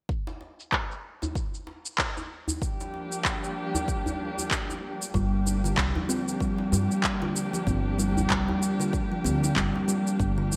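This hypnotic, earthy organic downtempo excerpt in G minor opens at 0.1 s over a Gm7 chord, with up-front electronic cabasa and handclaps, low-pass filtered and treated with gated reverb, above a deep electronic kick. A filter sweep runs across the drums while a soft-handed acoustic djembe joins at 95 BPM with a swung 16th-note feel. A dark, bowed chamber string section enters at 2.6 s with smooth, vibrato-rich sustained chords that pump from sidechaining, and at 5.1 s a thumb-plucked kalimba with a hollow, boxy tone plays delayed arpeggios while a woody pizzicato upright bass anchors the low end, all within bright 1980s-style digital production and a moderate plate reverb.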